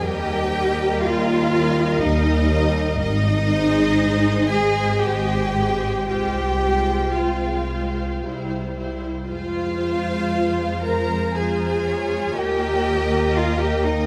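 The rich, up-front cello section stands out most in this slow, romantic movement for string orchestra in F minor, cut from a longer piece, moving in 3/4 at 56-62 BPM with a flexible, rubato feel. Beside it, the dark double bass section carries the bass with a soft attack, expressive portamento and vibrato, sounding lush and up front. A violin section plays the melody from a distance, sitting in the background with expressive vibrato, while a second violin section holds a smooth, even second line nearer the front. The viola section fills out the accompaniment with a lush, bowed sound, and all five parts play together from 0.0 to 14.1 seconds. The harmony moves from Eb through Ab, Fm/C and C to F minor before returning to Eb, and a huge ambient reverb places the ensemble in a vast, echoing space, giving the whole passage a yearning, melancholic mood.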